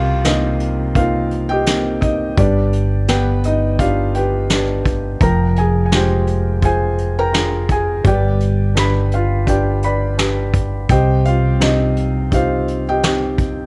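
Acoustic folk-pop ballad in C minor at 84 BPM, melancholic and heartbroken, cut from a longer piece, with an intimate felt-muted upright piano carrying the melody up front over a round, dark fretless electric bass and a vintage brush drum kit with a tight kick and rolled-off top. A woody, boxy archtop guitar plays picked arpeggios in the background until 10.0 s, while the chords move from Cm7 through G and Fmadd9 before settling on Cm at 10.9 s. The sound is close and detailed, with little reverb.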